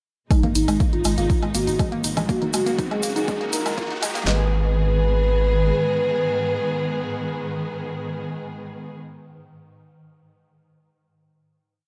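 A four-on-the-floor kick drives this short, complete melodic techno piece at 121 BPM in G# minor, with a punchy deep house kit of kick, fat snare and handclaps sitting up front, programmed electronic hats, woodblock and congas layered around it, and a grainy, bright tube shaker playing hand-played sixteenths from a distant, large-sounding room. Beneath them a round analog bass rolls in sixteenth notes, deep and dark with sidechain pumping, while a woody, wave-folded pluck with lush chorus and delay repeats a three-step arpeggio loop that drifts against the bar. An expressive synth lead, smooth and evolving with vibrato, chorus and tape echo, carries a repeating riff melody over sustained chords from a distant studio string section that moves through G#m, F# and D#m. The opening is a cinematic build in which filter sweeps move across the pluck and the lead and a background riser arrives at 2.0 seconds, joined at 2.6 seconds by a swarming, detuned granular drone with its own reverb. 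Around 4.3 seconds the drums, pluck and riser fall away and the piece settles on a final G#m chord held by the lead, strings, drone and the bass, which stops at 5.7 seconds, all under a light digital ambience.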